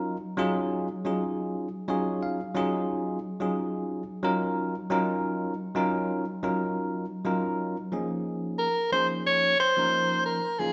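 A bell-like tine electric piano opens this slick, driving jazz piece, playing clean, up-front accompaniment in Eb minor at 90 BPM in 4/4 with a light swing on the sixteenths. The piano holds an Ebm11 harmony and drops in a short fill at 1.6 seconds. The harmony later shifts to Eb9sus4 as a new section begins. At 8.6 seconds a bright soprano saxophone enters up front as the solo melody voice, punchy and forceful, with a light vibrato in a jazz style. The band sounds as though it is playing live in one room, bathed in a wet large-studio reverb, and the clip is cut from a longer performance.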